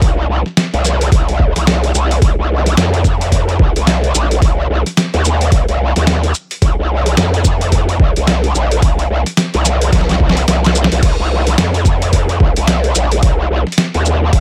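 A growling, saturated bass and a thumpy, overdriven electronic kick open this gritty, funky glitch hop cut at 109 BPM in C minor, with a 60% swing on the sixteenths. The bass sits up front, wobbling through a formant filter between Bb1 and F2, its bright, aggressive tone thickened with chorus and overdrive and held in sustained, compressed notes with a fast attack. Alongside it, a pitched-down, sampler-style boom bap kit supplies crash cymbal, hi-hat, shaker and a medium-tuned snare, compressed and driven into a crunchy, forward sound. All three parts play together from 0.0 to 14.4 seconds in a single section, with a drum fill from 9.9 to 11.0 seconds. The mix is dry, with little reverb, and the passage is cut from a longer piece.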